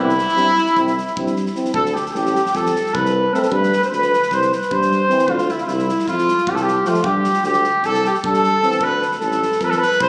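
Festive and virtuosic, this fragment of a Balkan brass band tune moves at a brisk 305 BPM in eighths, in 9/8 and C major. An up-front, mellow trumpet carries the melody with vibrato and tape echo, while a flugelhorn with light vibrato plays a second line in the background. Two clear euphoniums, one very quiet with a vintage tone, accompany until 8.8 s, and a warm tuba holds the bass. An airy, polished drum kit with a punchy kick and a medium-tuned snare enters at 0.1 s. The trumpet, flugelhorn and tuba sound distant and roomy, captured on a phone in the room with moderate concert hall reverb and a club-like ambience.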